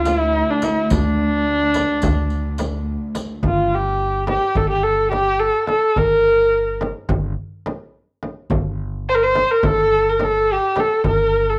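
A bowed kamancheh leads this soulful, longing Turkish makam ensemble piece, its single expressive voice singing up front with vibrato and portamento, yet carrying a distant, cassette-tinged warmth. The music moves in a straight 9/8 at 213 BPM counted in eighths, settling into G makam nihavent from 3.4 s, with the tuning pitched at A4 = 436 Hz. A lush, focused cello section holds a bowed drone beneath the opening, also colored by cassette tape, until it drops away at 3.5 s. An upright bass with gut strings plucks a woody, thumpy foundation throughout. Soft hands drive the percussion: a small, high clay-shell darbuka sits dry in the background, a deep, large frame drum keeps close company, and a riq adds bright jingles from a large room until 3.3 s. The whole fragment, cut from a longer performance, has the intimate feel of a home cassette recording placed in moderate studio reverb.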